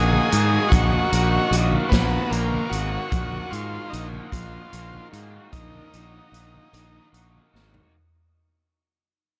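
Dark and hypnotic, this psychedelic rock excerpt in 6/8 puts a buzzy, heavily vibratoed overdriven combo organ melody up front with a diffuse ambient delay. Alongside it play a fuzzy, fingered electric bass, a bright, double-tracked garage guitar riff with overdrive and flanger, a vintage drum kit with a punchy kick, hi-hat, snare and toms, and very quiet, ringing congas. The passage fades out throughout in a small, lightly reverberant room, closing with a drum fill at 7.5 seconds.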